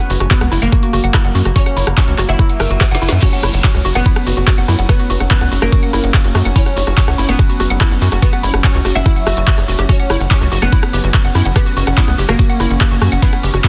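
A driving straight 4/4 pulse at 144 BPM anchors this alien, intense psychedelic trance passage in F# major, cut from a longer piece and built on an overdriven, knocking electronic kick that sits up front alongside a tight, punchy sequencer bass with a saturated, wave-folded sawtooth edge and a moving notch. An overdriven drum kit layers a woody snare, bright hi-hats, ride and crash cymbals, handclaps and rim clicks, with a drum fill from 2.8 to 3.2 seconds as a very quiet reverse cymbal and zap passes between 2.6 and 3.2 seconds. Over this, a bright, plectrum-plucked fretless oud with double strings carries the melody through phaser and tape echo. A percussive, warbling wave-folded pluck with a vintage, organic character plays a riff through chorus, cassette tape coloring and delay. Behind them, an evolving wavetable pad holds sustained chords with a slow attack, chorus and its own reverb. 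The pad, pluck and oud all pump against the kick, and the dry, dense, heavily limited master keeps the whole passage loud and close.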